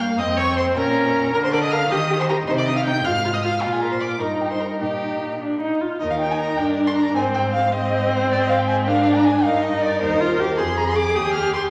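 A quick, cheerful and graceful classical-period string quartet movement in 6/8 at 105 BPM in Eb major, cut from a longer piece. A dark, woody violin carries the melody high above a smooth second violin, while an up-front, even-toned viola supplies the accompaniment over a rich cello bass, all four bowed with vibrato in a reverberant recital hall beneath a vinyl crackle, moving into a new section at 6.0 seconds.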